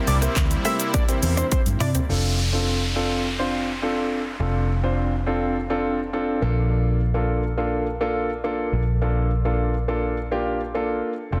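Euphoric and summery, this dance-pop excerpt opens on a full drop where a punchy pop drum kit with bright hats, handclaps, shaker and toms drives a straight four-four groove, closing with a drum fill just before 2.1 seconds. In that opening burst, a soft, detuned supersaw holds sustained chords beneath a fat analog lead whose mellow, vibrato-tinged melody carries chorus and digital delay. Both the supersaw and the lead pump with the sidechain, as does the bass, while a clean, direct-recorded electric guitar picks a compressed riff in the background. At 2.1 seconds the drums, supersaw, lead and guitar fall away, leaving a polished grand piano with short sustain and a dark, foam-muted fingered bass to carry the rest, with a downlifter effect sinking through the space until 6.7 seconds. The chords move from C7 to F6 and settle on Bbmaj7, all set in a lush hall reverb with a dense, heavily limited modern master.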